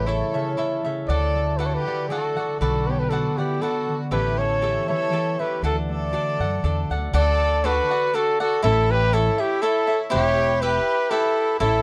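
A mellow trumpet leads this proud, romantic mariachi excerpt, singing the melody up front in a classical style with light vibrato over a 3/4 lilt at 119 BPM in D major. Behind it, a clear, biting chamber violin section bowed with a smooth top carries a second line, while a crisp, picked cavaquinho fills out the accompaniment and a bright, ringing concert harp plays fingerpicked arpeggios until 9.2 s. A woody pizzicato upright bass sits forward in the mix, and the whole piece has the dry, close feel of a 1970s-style studio recording.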